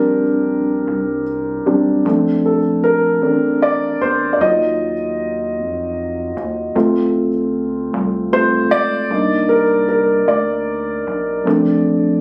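A slow, sensual R&B piece in a lilting six-eight feel, this short clip is carried by a dark, mellow grand piano that sits up front with long sustain and leads throughout, moving through lush jazz-tinged chords such as Bbmaj9, Ebmadd9, Dm7 and Cm9. Beneath it, a quieter, rubbery square-wave bass adds a hollow, bouncy low end, its resonant filter pluck and moving notch giving the sustained notes a fast, elastic attack. The sound is softened by light reverb and compression, with the close, slightly intimate character of a phone recording made in the room.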